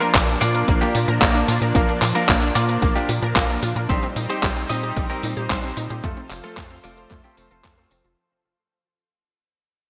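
A straight 4/4 italo disco groove, sunny and danceable, rides on a punchy, overdriven electronic kick and an up-front detuned 8-bit drum machine of handclaps and hi-hat, while a tight sawtooth sequencer bass with tube saturation drives beneath a thick, warbling chorused unison pad, a ring-modulated pluck arpeggio with digital delay, and clean, compressed stabs from a semi-hollow electric guitar in spring reverb, the whole mix set in a lush hall with a bright 1980s-style digital sheen as the chords move from Bb through Cm/Bb to F and the excerpt fades out from 2.5 seconds.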